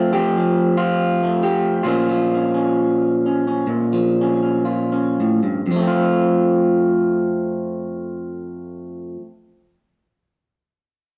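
A lone electric guitar through a small old amp opens this peaceful, pastoral folk fragment, cut from a longer piece, its picked tone bright, twangy and slightly broken-up as it sits up front in a dark-toned mix. In a lightly swung 4/4 between 57 and 72 BPM, the phrase moves from Fadd9 to Bb minor and slows over its first 5.7 seconds. It then settles onto F, with a moderate studio reverb trailing the guitar until it stops at 9.3 seconds.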